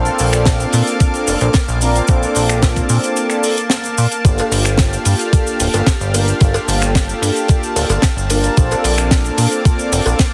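A small-room sound with light reverb is pressed into a dense, heavily compressed radio-style finish for this groovy, sensual nu-disco excerpt, cut from a longer piece and moving at 111 BPM in a straight 4/4. An up-front, thumpy electronic kick anchors the groove, dropping out between 3.2 and 4.2 seconds, while a tight, dry funk kit adds a high-tuned snare, hi-hat, ride cymbal, finger snaps and cabasa with a polished, airy edge. The chorused synth bass sits forward too, retro and glossy with a nasal pulse-wave bite and a plucky filter. Above it, mellow synth brass plays accompaniment in a round, dark, detuned tone with dub echo, and a lush, thick unison pad holds bright sustained chords, both breathing with sidechain pumping. A background cowbell enters at 4.4 seconds, just after the harmony moves from Bbmaj7 to Gm9, and the harmony returns to Bbmaj7 at 8.6 seconds.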